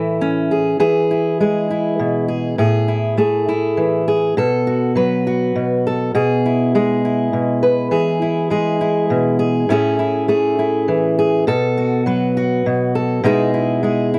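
A dry, close recording with the feel of a 1970s studio and a small room's ambience frames a lone fingerpicked steel-string acoustic guitar. Its auditorium-bodied tone sits up front, touched by a slapback echo, and it ranges from A2 to B4. This hopeful, nostalgic folk passage, cut from a longer piece, moves at 68 BPM in a straight 6/8 and is tuned to A4 = 441 Hz, drifting from Amaj7 through E, A5, B5 and E/B before settling on Emaj7/B at 13.3 seconds.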